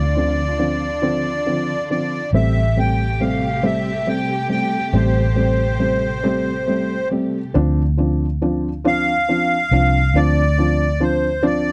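A dry, close 1970s-style studio sound frames this aching, dramatic six-eight pop ballad, where a reedy, sweet accordion with light tremolo tuning carries the melody over a dark, round, foam-muted electric bass and a soft, felt-muted upright piano that enters at 0.2 seconds, while a lush bowed string section holds sustained chords until 7.5 seconds.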